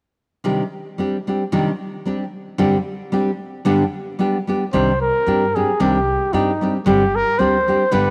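Mexican folk in a mariachi vein, this short excerpt from a longer piece feels passionate and dramatic, moving at 112 BPM in 2/4 with a lightly swung lilt in C minor. A fingerpicked nylon-string guitar opens alone at 0.4 seconds, up front with a full-bodied, deep classical tone and a faint cassette-tape grain as it lays out the accompaniment. At 4.7 seconds a dark trumpet takes the melody in a classical solo style, its smooth top and light vibrato sitting prominently in the mix, while a woody pizzicato upright bass with steel strings enters underneath, set lower and softer. The harmony shifts between Cmadd9, Gsus4 and G, giving the phrases a yearning, unresolved pull. A lush hall reverb of moderate depth surrounds the homemade cassette recording, lending the intimate playing a spacious glow.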